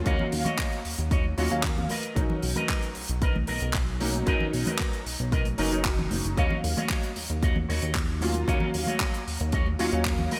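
A punchy, layered electronic kick drives this sleek, sensual nu-disco clip, joined by a tight, dry funk kit with handclaps and hi-hat and bright, high-tuned congas sitting in the background. A glossy, chorused synth bass with a fast pluck holds the low end, while a clear vintage electric grand piano with a clangy low register, treated with chorus, low-pass filtering and delay, and a dark, clean envelope-filtered guitar riff bathed in lush chorus and delay move between Ebm7 and Bmaj7. The bright 1980s-style digital production carries light reverb and studio ambience.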